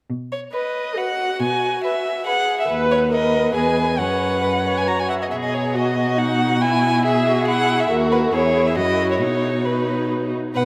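A vast, echoing cathedral reverb surrounds this cheerful, lively excerpt of a quick classical-period string quartet movement in B major and 3/4 at 138 BPM, played with rubato, where a focused, up-front violin carries the melody with vibrato over a close, even bowed cello bass entering at 0.1 seconds, while a distant second violin and a portamento-inflected viola fill in the inner lines as the harmony moves from B through E and F#sus4 before settling back on B.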